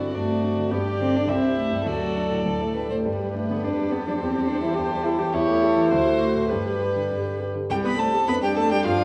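Set in a quick 2/4 at 104 BPM with a supple, rubato feel, this cheerful, lively classical-period movement for piano quintet unfolds in G major, tuned to A4 = 444 Hz, and is cut from a longer piece. A single bowed violin carries the melody with a soft attack and a pure, floating sul tasto tone. A second, darker violin traces a second line with light vibrato and an intimate, close presence. The grand piano sits up front with a smooth, vintage character, and the viola adds an airy bow to the accompaniment. The cello joins at 0.2 s as a second line, its warm sul tasto sound carrying a little more weight than the other strings. The ensemble sits in a wet recital hall with a 1.4-second reverb, and a new section begins at 7.7 s as the harmony shifts from C toward D minor.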